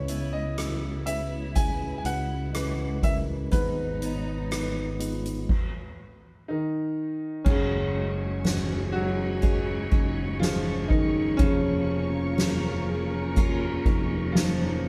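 A moderate studio reverb gives this live-in-one-room recording a natural, roomy sound, with the drums and the grand piano placed up front. It is an emotional, heartfelt pop ballad in F# major at a slow 61 BPM in a straight 4/4, taken from a longer piece. A clear concert grand piano with deep bass carries the melody over a mellow tine electric piano heard through its built-in speakers, while a dark, lush symphonic string section holds bowed chords with expressive vibrato and a smooth top. A picked steel-string acoustic guitar plays arpeggios in the background, and a round, dark fingered electric bass anchors the low end beside a soft-mallet drum kit with a fat snare, a boomy kick and dark cymbals. The harmony moves from C#m7 to G#m, a stop falls from 5.5 to 7.5 seconds, and the second half turns to F#sus2 and A#m/E#.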